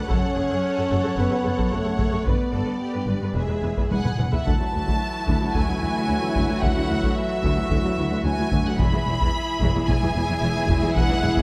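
A clear, distant violin section carries the melody over a smooth second violin line and dark, woody violas in this triumphant, majestic excerpt of an epic orchestral film score. Soft-edged French horns hold sustained chords in the background, while rich cellos and double basses anchor the bass and heavy, saturated taiko drums drive the pulse. The taiko plays a fill from 3.9 to 4.5 seconds, and at 4.5 seconds a bright, very quiet trombone section joins the sustained chords, all set in a moderate scoring-stage reverb.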